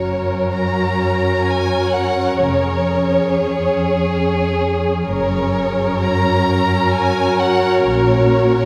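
From the first moment, a full chamber string orchestra sounds together in a slow, tender romantic movement in triple time, its pulse stretching and easing with rubato. Up high, a rich violin section carries the expressive melody with vibrato, while a second violin line sits just beneath it, close and up front. A viola section fills the middle with smooth-topped accompaniment, and a cello section gives the bass a soft attack, gentle portamento and an up-front presence. A double bass section doubles the bass from the background with an even, smooth bowed tone. The ensemble is heard from further back in a scoring stage's lush reverb as the harmony settles through a handful of unhurried chord changes in this 8.7-second passage cut from a longer piece.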